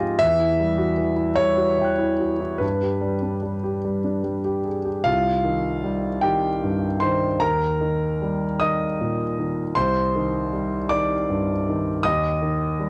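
A warm, up-front grand piano with long sustain and audible action noise plays alone through this intimate, reflective neoclassical minimalist excerpt in a rubato 6/8 at 48-53 BPM, tuned to A4 = 438 Hz, ranging from C2 to F#6 over chords moving from Emadd9 and G into Cm and Eb, with light reverb and the natural grain of a home cassette recording.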